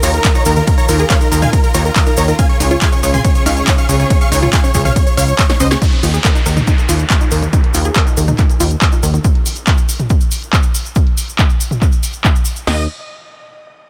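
Euphoric yet bittersweet, this uplifting trance excerpt opens mid-drop, with a huge, detuned supersaw lead carrying the melody over background symphonic strings with vibrato and portamento, a lush unison pluck arpeggio, and a funky, up-front analog bass, all breathing with sidechain pumping and moving from Ebsus2 to Db. Two punchy, tape-colored analog drum machines drive it, one supplying kick, snare and crash, the other adding filtered hats, ride, toms, snare and handclaps, while a grainy, bright tube shaker rides along in a small room and a digital ambience surrounds the mix. A drum fill at 5.5 seconds ends the drop, the lead and strings stop at 5.8 seconds as an electronic downlifter falls until 9.2 seconds, and the pluck and bass then drop out, leaving drums and shaker until the lead and bass return briefly at 12.7 seconds.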